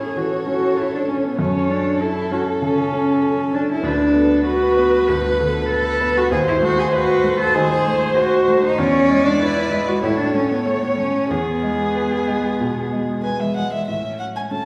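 Lively and graceful, this quick classical-period piano quartet movement, taken from a longer work, sets a dark, woody violin melody played sul tasto with vibrato over a warm, airy-bowed cello second line placed close and up front, while a clear grand piano with audible action noise and a distant, shadowy viola provide the accompaniment, the ensemble heard from further back in a wet recital hall.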